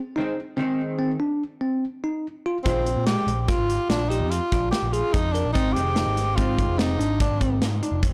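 Intricate and bright, this short cut from a longer progressive instrumental moves in 7/4 at 145 BPM with a straight feel, circling from Ab to Bb7(no3) and back to Ab. A bell-like tine electric piano opens with clean, direct arpeggios alongside a vintage hollow-body jazz guitar whose double-tracked, compressed accompaniment sits low in the mix and drops out at 7.0 seconds. At about 2.7 seconds the band fills in: a picked electric bass, round and punchy, joins a modern studio drum kit of hi-hat, tight kick and medium-tuned snare placed up front. A clear tenor saxophone carries the melody from 2.6 seconds, close-miked with a soft attack and jazz vibrato, its tone trailed by delay and plate reverb. The keys and guitar share that plate reverb in a moderate room, while the whole recording is blown-out and overdriven.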